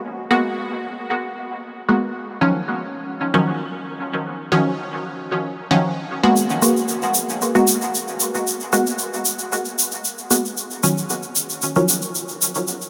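Dub techno at 114 BPM in G# dorian, deep and nocturnal, this excerpt sits in a huge, wet ambient reverb with a long 6.2-second tail. A muted, detuned sawtooth chord stab with a quick filter pluck sits up front from 0.3 seconds, colored by chorus, phaser and dub echo as it moves between G#m9 and D#m9. At 6.4 seconds a grainy, bright tube shaker joins, also up front, playing until the cut at 12.9 seconds.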